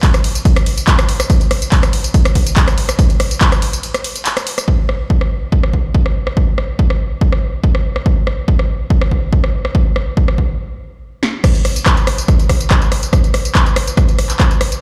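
A straight pulse drives this dark, hypnotic techno fragment, where an up-front analog kick is joined by a punchy drum machine playing crash, ride, hi-hat, rim click, snare, handclaps and tambourine, the snare, claps and hats given a short room and the whole kit re-amped through a big sound system in a bare, large room, with a break at 3.8 seconds, a full stop at 10.6 seconds and a drum fill at 11.2 seconds launching the return of the opening groove.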